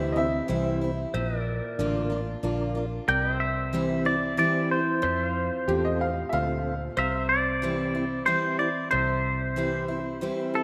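In an unhurried, straight 3/4 at 92 BPM, this sunny, down-home country excerpt in C mixolydian rests on a dark, foam-muted electric bass, a bright dreadnought acoustic guitar, and a flute-like tonewheel organ turning through a slow rotary speaker, while a pedal steel guitar holds chords with volume swells under lush chorus, a worn, slightly detuned upright piano adds brief lines at 0.0 and 5.7 seconds, and a compressed, twangy electric guitar carries the up-front melody from 3.1 seconds, all wrapped in a wet hall reverb and a rough home-demo mix.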